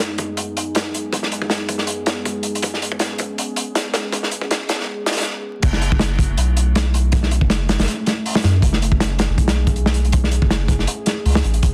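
Drum and bass with a jungle edge, this frenetic, dark excerpt at 160 BPM in F# dorian sets a warbling, nostalgic tape-like pad of detuned, chorused chords against an up-front, gritty breakbeat kit with a punchy kick and dark cymbals, building until a brief break at 5.3 seconds gives way to a drop at 5.6 seconds where a round, deep dub sub bass enters, all wrapped in a dense, heavily limited master with vinyl crackle.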